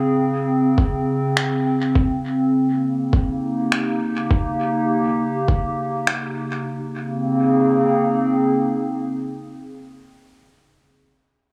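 Ambient dub in Bb dorian at 102 BPM with a light 16th-note swing, deep and meditative, cut from a longer piece. A warbling, lo-fi pad of square and triangle tones holds dark, nostalgic chords that move from a rootless Bbm11 to Eb7 and back, treated with chorus and its own reverb and sustained through to 9.8 s. Up front, a muffled, thumpy, pitched-down kick enters at 0.8 s and overdriven electronic finger snaps with dub echo follow at 1.4 s, both in a small room, while the mix sits in a moderate spring reverb.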